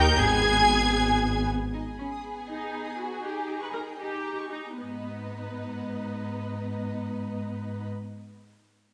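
The recording sits in a wet recital hall whose reverb lingers for 1.7 seconds, lending this stormy, urgent fragment of a quick classical-period movement for string orchestra a spacious bloom. A violin section carries the melody high above in a smooth, even, bowed voice with vibrato. A second violin section joins at 0.2 seconds on a lower line, its focused, lush tone sitting just beneath. Violas fill in the accompaniment from a distant place in the room, while cellos anchor the bass with a rich sound. A double bass section, up front with light vibrato, deepens the bottom only briefly before stopping at 1.5 seconds. The music slows between 1.0 and 4.8 seconds as the harmony moves from its home chord to D# and back in a steady 6/8.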